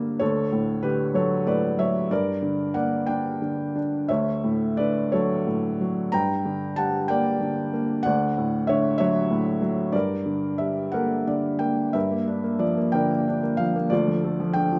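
Bathed in a moderate recital-hall reverb, this tender classical solo piano passage, cut from a longer piece, features a felt-muted upright heard up front with a mellow, intimate, thin-felt tone, moving in a lyrical, rubato 6/8 between Dmaj7 and Gm chords before a short fill at 10.9 seconds leads into a new section at 12.0 seconds that settles from Gm7 onto Dm.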